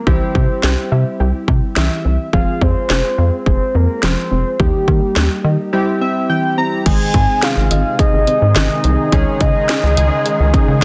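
Cool and melancholic, this synth-pop excerpt moves at 106 BPM in a straight 4/4, cut from a longer piece and tuned slightly flat of standard pitch. A round, full-bodied octave-layered synth lead carries the melody with vibrato, colored by chorus, phaser and digital delay, while analog keys with a filter-swept pulse-and-sawtooth tone supply accompaniment and short fills around 1.5, 5.7 and 10.5 seconds. Underneath, a soft, gentle pluck sits in the background with chorus and delay, and a rubbery, hollow square bass bounces up front beside a punchy, layered house drum kit with a cracking snare, hi-hat and crash. The harmony moves from C through Fm and Eb and back to C before turning to Ab and Dbsus2, where at 6.9 seconds an airy, detuned pad enters with a slow filter swell and bright shimmer. A moderate digital room reverb surrounds the parts, and the master is dense and heavily limited in a modern style.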